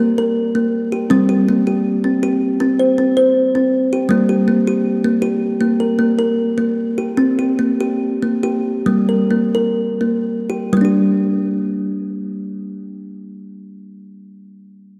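World meditative music in a hypnotic, gentle mood, where a lone solid-board kalimba plays up-front, woody thumb-plucked arpeggios from 0.0 to 14.4 seconds over Gm and C5 chords, slowing down between 4.1 and 10.7 seconds inside a dark production bathed in a long church reverb, all cut from a longer piece.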